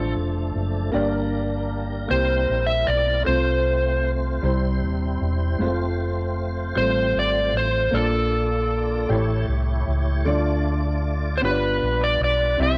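A slow, straight 6/8 pulse at 52 BPM carries this hopeful, soulful gospel excerpt in F major, with an overdriven slide guitar singing the melody up front between A4 and E5 over a woody, boxy upright piano. A full tonewheel organ holds sustained chords through a slow rotary speaker, light overdrive and chorus vibrato, while a dark, round hollow-body electric bass sits up front, reaching down to Eb1. Light reverb and digital ambience frame the whole 12.8 seconds, as the harmony moves from Dm/F through Gm and C7 to F, then on through Bb, A7 and Dm before ending on G7.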